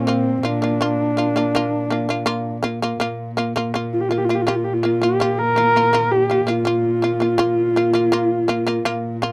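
A dry, close recording in a small booth, with a brief, moderate ambience and a 1970s studio character. This is a short cut from a longer piece of Mongolian traditional music, vast and galloping in mood, moving at a straight 82 BPM in 4/4 in a Bb gong mode, with the harmony resting on a Bb5 chord. A horsehead fiddle carries the melody between C4 and Bb4 from 0.0 to 9.2 seconds. Its single bowed horsehair voice sits up front, husky and woody, with vibrato, portamento and a smooth top. Just beneath it, a fretless shamisen plucks bright, buzzing, percussive arpeggios from Bb3 to F4, powerful and also up front. Quietest of the three, a cello holds a low Bb2 drone through 9.3 seconds, bowed sul tasto with a soft attack and vibrato, sounding dark and intimate.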